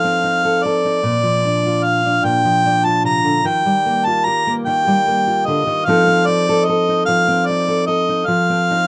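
A harmonica carries the melody in a classical, solo style, its warm tone sitting up front in this gentle, pastoral acoustic folk excerpt. Beneath it, a fingerpicked steel-string acoustic guitar supplies the accompaniment with a dark, auditorium-like body, and a finger squeak can be heard on the strings. Both instruments play together from 0.0 to 8.9 seconds in an unhurried, straight 6/8 pulse. The harmony moves from F7 to Bb, then to Ebadd9, and returns to F7 near 5.9 seconds. Light reverb gives the ensemble a soft sense of space.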